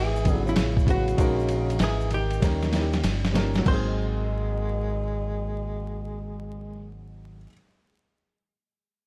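Nocturnal and smoky, this swung jazz-hop excerpt sets a clean, hollow-body jazz guitar melody over a growling, breathy tenor saxophone line, a round, deep dub fingered bass, a woody, slightly detuned upright piano with audible action noise, and a gritty, pitched-down boom bap kit with a thumpy kick that plays a fill from 2.4 seconds and stops at 3.8 seconds alongside faint egg shaker and congas, all beneath vinyl crackle over chords moving from C#m7 to G#7.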